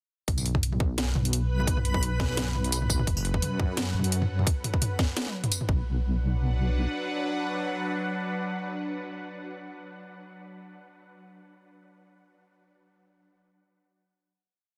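Dense, heavily limited and lightly reverberant, this heavy, cinematic half-time drum and bass piece drops in at 0.3 seconds with a tight, overdriven electronic kick and an up-front kit of cracking snare, bright hats, tambourine and low tom, all alongside a deep, dark sawtooth wobble bass with chorus, while a reversed, dreamy triangle texture holds a high note and a tense, string-like bowed drone with phaser and sidechain pumping enters at 3.6 seconds and outlasts the other parts after the final hit at 5.9 seconds.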